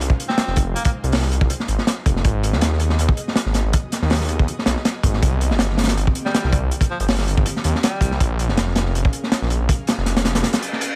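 A crunchy breakbeat kit and a thick, detuned saw bass open together, driving this raw, frenetic slice of jungle drum and bass with a lightly swung sixteenth-note feel. The drums sound acoustic and up front in a small room, dark and saturated with a tight kick, a medium-tuned snare, hi-hat and a rolled-off top. Alongside them the bass is menacing and beating, its tube-saturated sawtooth tone sustained with a fast attack as the minor-seventh chords shift through Fm7, Abm7, Cm7 and Bbm7. A breathy tenor saxophone offers a brief jazz-style phrase near the start and returns at 6.3 seconds for a clear, vibrato-laden solo line with scooped notes, roughened by vintage 12-bit sampler grit and trailed by dub echo. An electronic reverse cymbal arrives at 10.6 seconds, closing this cut from a longer piece.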